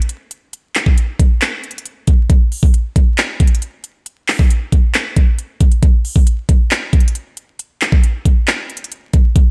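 Dark and eerie, this short cut from a longer hip hop piece moves at 136 BPM in 4/4 with a half-time feel. A trap drum kit carries the whole 9.5 seconds, its electronic, produced sound built from a knocking kick drum, crisp hi-hats and handclaps. The kit sits up front in the mix, giving the beat a close presence. The room is nearly dry, with little reverb around the drums. A layer of vinyl crackle runs through the recording, adding a dusty, worn texture to the stark groove.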